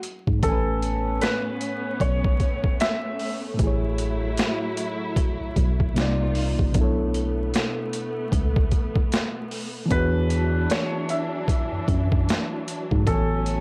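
A swung boom bap groove at 76 BPM in 4/4 anchors this hazy, reflective lo-fi hip hop clip, its sampler-style kit pitched down and overdriven with a thumpy kick, a high-tuned snare and hi-hat sitting up front with the grit of a large room. A mellow tine electric piano carries the bass line from 0.3 seconds, worn and slightly out of tune, while a reedy electric piano, heard through its built-in speakers and softened by a low-pass filter, fills in the accompaniment. A lush studio string section holds sustained chords with vibrato and portamento, its smooth top also filtered, moving through Amaj9, F#m9/A, Cm11, Bm11 and E13 before returning to Amaj9. A felt-muted upright piano, intimate and soft on thin felt, sings the melody at 0.4 seconds, falls away at 3.4 seconds, then comes back at 9.9 seconds. The whole recording is dry and gritty, with transformer saturation and vinyl crackle giving it a dusty, close feel.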